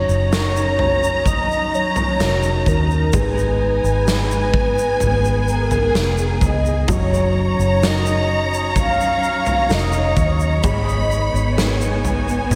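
A slow, straight 4/4 pulse at 64 BPM carries this heartfelt, hopeful pop ballad in F# major, tuned to A4 = 438 Hz and cut from a longer piece, as the harmony alternates between F#6 and G#madd9. A grainy, bright egg shaker sits in the background from 0.1 s, and a huge arena drum kit joins at 0.3 s with a punchy kick, a medium-tuned snare and toms in a big, natural room, over a dark, round, foam-muted electric bass with an amped vintage tone. A mellow, horn-like synth lead with a sawtooth edge, soft attack and warbling vibrato carries the melody through chorus and delay until 11.6 s, while a violin section plays an expressive second line above it with portamento and its own delay. Beneath them a lush studio string section holds smooth, even bowed chords, and a felt-muted upright piano adds boxy, intimate accompaniment with audible action noise and subtle chorus in the background. The whole mix is dreamy and soaked in a lush hall reverb.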